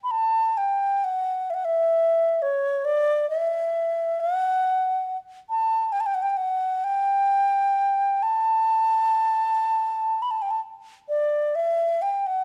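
Set in a moderate recital hall with a dark, warm production, this recording gives a lone baroque flute a gentle halo of reverb. The music is Celtic folk in 6/8, played with a free, rubato feel that leaves a nostalgic, pastoral mood. The flute plays solo from start to finish, sitting up front with a reedy, wooden tone that is also pure, colored by vibrato and clearly tongued notes. Its line stays in a compact upper register, from C#5 to B5. At 11.1 seconds the tune moves into a new section, and the recording stops at 12.4 seconds as a short cut from a longer piece.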